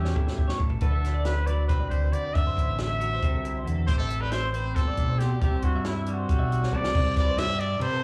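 This bright, playful math rock and midwest emo excerpt opens with a drum fill as the whole band comes in together, driving along at 275 BPM in eighths in a straight 7/8 and centred on C lydian. A clear, distant trumpet carries the melody with a light vibrato and a pop style, touched by slapback and tape echo. Beneath it, a twangy clean electric guitar plays picked accompaniment. A compressed twelve-string electric guitar spins arpeggios in the background through analog chorus and echo. A growling, overdriven fingered bass sits up front with a punchy attack, and a compact cocktail kit sounds dry and natural, with dark cymbals and a high-tuned snare. The harmony moves from A7 through D13 and Am7 to Cmaj7#11. After a second drum fill at 6.6 seconds, the clean electric guitar drops out at 6.9 seconds as the music settles onto Cmaj9. The whole performance is heard live through a venue's PA, with little reverb beyond a small club's room ambience.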